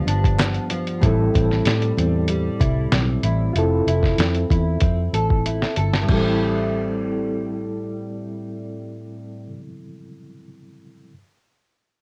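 Wistful, hazy indie bedroom pop at 95 BPM in A minor, cut from a longer piece, where a fingerpicked nylon-string guitar with finger squeak, lush chorus, warbly pitch drift and cassette-tape color plays alongside a reedy, lightly overdriven electric piano with fast tremolo and its own cassette grain over G7, Am7 and Fmaj7 chords, anchored by a dark, round, foam-muted fingered bass and an up-front, compressed, pitched-down sampler-style drum kit with a thumpy kick and fat snare that plays a fill from 5.5 seconds and stops at 6.2 seconds, while a hollow group handclap sounds briefly in the background at 0.4 seconds, all in a moderate room with a homemade cassette sound.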